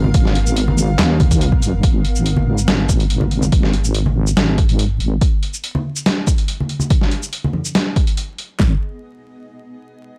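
This brooding deep dubstep excerpt opens on a drop, with a blurred, granular cloud pad holding sustained chords over a deep wobble bass and low-tuned congas played with soft hands. Almost at once two drum kits join in a half-time feel: an overdriven electronic kit with a punchy kick and fat snare, and a compressed, pitched-down sampler-style kit adding handclaps, hi-hat, shaker and a medium-tuned snare with a tape-warm edge. The pad drops out at 1.8 seconds, and the harmony falls away while the detuned sawtooth-and-sine bass carries on up front, thickened by chorus and transformer saturation, until it stops at 5.2 seconds. The bass returns at 8.6 seconds as the chord comes back, and the slow-blooming pad reappears briefly near the end of the cut. The whole recording has a cavernous yet dry and gritty hardware character, coloured by vinyl crackle.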